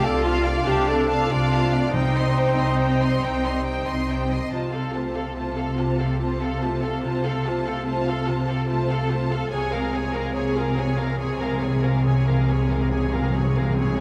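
Determined and swashbuckling, this heroic adventure film cue moves at 95 BPM in a straight 12/8, cut from a longer piece and bathed in the reverb of a recital hall. A lush violin section carries the melody with expressive vibrato and a smooth top, while a second violin line adds portamento above a rich, even viola accompaniment. Beneath them, a woody cello section and a focused double bass section hold the bass on C, and a very quiet concert harp rings out fingerpicked arpeggios throughout. In the background, a dark solo clarinet traces a second line while a soft-attacked trumpet section with a smooth top sounds its stabs, both only until 4.3 seconds. Very quiet timpani played with soft mallets on calf heads enter with a round tone from 1.9 to 5.1 seconds, returning for a fill from 9.5 seconds to the end. The harmony moves from Dm/C and Cm to F/C and finally Db6/C, all over a steady C in the bass.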